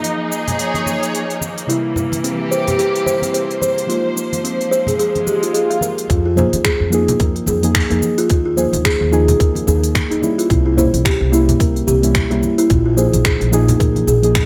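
A buzzing kalimba stands out in this hypnotic, meditative organic downtempo cut, its woody, hollow-box arpeggios entering at 1.7 seconds with a vintage 12-bit sampler grit and digital delay. Muted, felt-like synth keys play dark, intimate accompaniment throughout with chorus and sidechain pumping, while a lush, up-front symphonic string section holds bowed chords with vibrato until 6.1 seconds. At 109 BPM in F minor with a swung 16th feel, a deep house drum kit of finger snaps, smooth hats and shaker sits beside soft-handed congas and bongos in the background. An electronic swell leads into the second section at 6.1 seconds, where a woody, thumpy pizzicato upright bass on gut strings and a tight, tape-warm electronic kick drum join. The chords move through Eb9sus4, C7 and Bbsus2 before settling into Fm7, Eb9sus4, C7b9 and Bb5, framed by moderate plate reverb and a bright 1980s-style digital sheen in this excerpt from a longer piece.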